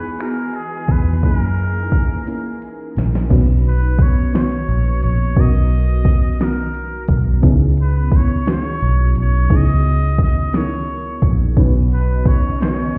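Heard muffled, as if through a wall, with a stone-room reverb, this short cut from a longer piece is a tender, sensual slow R&B groove in 6/8 at 58 BPM in B major. A nasal muted trumpet carries the jazz-style melody with light vibrato, scooped notes and digital delay over a dreamy, chorused FM electric piano with a soft pad layer. Beneath them sit a round, punchy, up-front fingered bass and a produced kit of soft kick, fat snare, metallic hats, finger snaps and crash with a fill at 2.3 seconds, while woody bowed strings hold chords until 3.3 seconds and return at 11.6.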